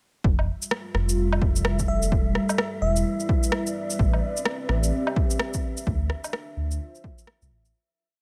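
Melancholic and ghostly, this short future garage piece moves at 128 BPM with a swung 16th-note feel, its groove running from 0.2 seconds under slowly shifting Fmaj9, Em7, Am11 and Dm9 chords played by a dark, wave-folded analog pad with chorus and sidechain pumping, over long gliding notes from a rumbling, detuned saw bass that also pumps. A muffled, overdriven two-step kick sits up front beside a skittering shuffled beat of electronic woodblock, shaker and rim click, while a breathy, wind-like noise texture holds a high note in the background. A sparkling, bell-like FM electric piano with tremolo and tape echo offers short phrases from 1.9 to 3.2 seconds, and the piece fades out from 5.2 seconds.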